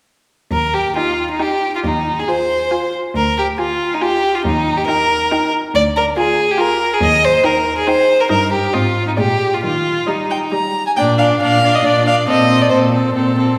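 This excerpt from a quick classical-period movement for string quartet opens at 0.5 seconds with a clear second violin and a clear, focused cello, the violin sitting close and up front in a smooth, even line while the cello holds the bass. At 1.0 second a rich violin takes the melody high above, its bowed tone focused and sung with vibrato, as a viola fills in the accompaniment with a rich, smooth sound. The mood is graceful and spirited, moving in a triple metre with a rubato feel that lets the phrasing breathe. The harmony circles around the home chord with diminished colour before a brief cadence, then moves to a new section at 11.0 seconds that settles on a suspended chord as the passage breaks off. The whole quartet sits in a wet concert hall reverberation, each player bowing a single line with vibrato.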